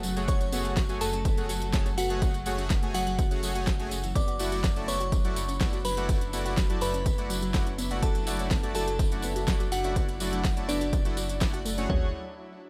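A dreamy, expansive progressive house drop at 124 BPM opens with a crystalline FM glassy synth bell melody with dub echo, a shimmering ambient pad holding ethereal phased chords, glassy wavetable pluck arpeggios with delay in the background, a thick saturated sub bass, a pop drum kit of crisp hats and fat snare, and a jingly close tambourine, before smooth detuned soft supersaw stabs arrive at 0.2 seconds and a big-room dance drum kit with a punchy up-front kick and toms lands at 0.3 seconds, the bell, pad, pluck, bass and supersaw all pumping to the sidechain in a dry mix as the harmony moves from F#madd9 to Dadd9/F# at 4.2 seconds.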